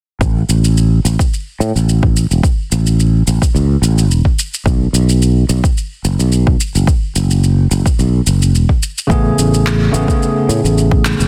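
A lightly swung 16th-note groove at 108 BPM in 4/4 drives this smooth, relaxed sunset chillout passage in A major, cut from a longer piece, where a deep, up-front electronic kick and softer layered shaker and handclaps, both with a tape-colored sheen, sit beneath a growly, punchy sustaining fretless bass that touches a B5 chord at 4.7 seconds before a bright, bell-like tine electric piano enters at 9.1 seconds on an Amaj9, roughened by vintage 12-bit sampler grit and trailed by delay, all under light reverb and a dense, heavily limited modern master.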